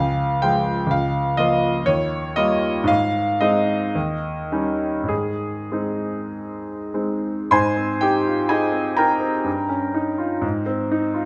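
A brilliant, up-front concert grand carries this romantic classical character piece alone, its deep bass and long sustain ringing through a moderate recital hall reverb. In Ab major and 2/4, the hopeful passage moves at a slow, rubato 47-63 BPM, opening on a Db chord and turning through Eb harmonies before settling home on Ab. A new section begins at 7.5 seconds, and the piano returns to Ab at the close of this brief fragment cut from a longer work.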